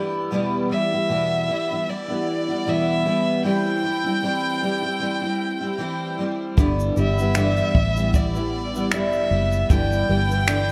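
Acoustic pop with a carefree, easy-going mood, this brief excerpt opens on a double-tracked, picked steel-string acoustic guitar, joined at 0.7 seconds by a distant yet up-front violin line, bowed by one player with smooth vibrato and a touch of delay over chords moving from Em through C/E. At 6.6 seconds, as the harmony settles on G6, a round, foam-muted fingered electric bass and a compact cocktail kit of finger snaps, punchy kick and shaker enter, the drums dark and rolled-off under gated reverb. The bright 1980s-style digital production sits in light studio reverb with a relaxed swing.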